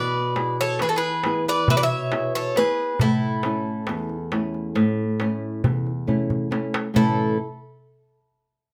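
The recording sits in a small, reverberant room, giving this short Greek folk passage for a bouzouki band an intimate feel. The Greek bouzouki carries the melody up front: its bright, metallic double strings are picked, with some strings doubled at the octave, and a plate reverb adds shine. Beneath it, the mandolin plays a round second line on picked double strings, while the flamenco guitar fingerpicks a woody accompaniment on old strings, also forward in the mix. A crisp, metal-shell darbuka sounds close and up front, joining at 0.1 seconds and playing a fill from 6.1 seconds into a new section at 7.0 seconds. The straight 9/8 metre and the move from E to A give the music a peaceful, calm character.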